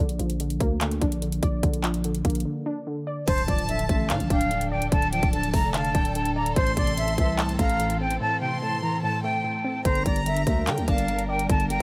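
A half-time trap groove in 4/4 drives this menacing, melancholic hip hop excerpt, its electronic kit pushed up front with a hard-clipped kick, metallic hi-hats, handclaps and crash cymbal. Underneath, a growling, buzzy 808-style bass with a fast attack and decaying tail holds the low end, while a lo-fi, detuned sawtooth pluck warbles through chorus and a low-pass filter sweep, dusty and mellow. At 3.3 seconds the harmony moves from Bb into a Dm, Am, Gm progression as a breathy, close-miked concert flute takes the melody with expressive vibrato, and a very quiet electronic impact lands at 3.4 seconds. A sul tasto chamber violin section adds an intimate, softly bowed second line through digital delay, while a dark symphonic string section sustains lush chords in the background. The mix is dry, with a break at the opening and another later in the passage.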